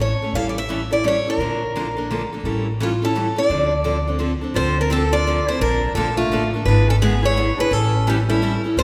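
The bright picked steel-string guitar carries the melody up front in this virtuosic, bittersweet jazz manouche excerpt in D minor at 171 BPM in a swung 3/4, joined by a second picked guitar's accompaniment with finger squeak, a woody, thumpy pizzicato upright bass, and, from 4.5 seconds, a distant clear clarinet second line with vibrato and scooped notes, all bathed in a wet church reverb.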